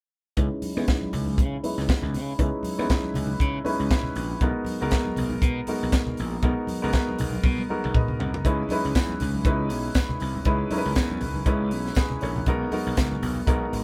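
A tight, dry funk drum kit sits up front, its high-tuned snare and tight kick driving a glamorous, danceable disco groove with a light swing on the sixteenths. A gritty slap bass, bright, overdriven and growly, plays beside it. A grand piano with long sustain fills in the chords, moving between C#m7 and G#m7, and carries a filter sweep through the opening stretch. Hard-handed congas with a thin, close skin sound tap in the background, and a drum fill at 7.4 seconds leads into the next section, where a faint, jingly tambourine joins at 9.0 seconds. The band sounds like it is playing live together in a small room with a moderate reverb, and the clip is cut from a longer piece.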